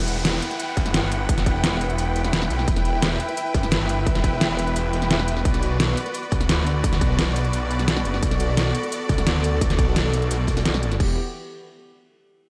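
A straight 4/4 drum and bass groove at 173 BPM drives this dark, technical excerpt in E minor, built on an up-front dubstep kit with a deep snare, crisp hats and crash, a punchy layered electronic kick entering at 0.8 s, and a very quiet, gritty breakbeat kit tucked beneath. A snarling, detuned saw bass growls up front with distortion and sidechain pumping, while a bowed string section holds rich, vibrato-laden chords that also pump as they move from Em to Bm at 5.5 s. An electronic downlifter sits in the background for the first 2.7 s, and a dreamy plate reverb soaks the mechanical, futuristic mix.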